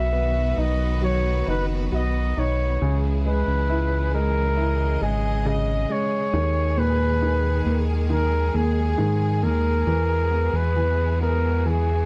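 From the first second, a heartfelt 68 BPM pop ballad unfolds as a vibrato-rich flugelhorn sings the melody with a slapback echo over clear concert grand piano, lush bowed strings and a round, dark analog bass, all captured in a dry, close 1970s-style studio sound as the chords move from B to C#m, G#madd9/D# and Eadd9 in this short excerpt.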